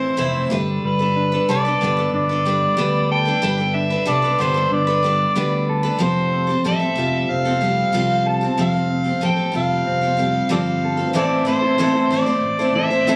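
A straight 4/4 pulse at 93 BPM drives this short, wistful cut of folk rock and heartland rock, with a dusty air thickened by the club ambience of a phone recording made in the room under light reverb and compression. Up front, an amplified, overdriven harmonica carries the melody with a gritty edge, light vibrato, tongue slaps and scooped notes in a pop-style solo, its tone trailed by tape echo. Beside it, a bright, full-bodied dreadnought steel-string acoustic guitar is picked as accompaniment, finger squeaks audible, while a dark, clean electric guitar plays a fingered riff and a punchy, amped fingered electric bass holds the low end. The harmony moves from Am through Gadd9 to Fadd9 at 6.0 seconds before returning to Am at 11.2 seconds. Near the close, from 10.8 seconds, a very quiet, flute-like tonewheel organ adds soft sustained chords with chorus vibrato and a slow rotary speaker.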